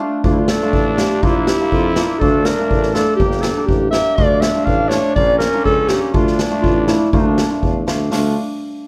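A straight 2/4 pulse at 122 BPM drives this soulful, bittersweet klezmer piece in D harmonic minor, tuned to A4 = 435 Hz and cut from a longer work. A street-band drum kit with boomy kick, medium-tuned snare and hi-hat sits up front in an airy big-room sound, and a present tuba with light vibrato joins at 0.2 s. Over chords moving between Dm, Bb and Gm, a mellow, smooth-topped clarinet carries the classical-style melody with slapback echo and plate reverb, while a raspy, gritty trombone with scooped notes plays a growling second line and a hammered dulcimer rings and shimmers underneath, all in a dark production with a touch of room reverb.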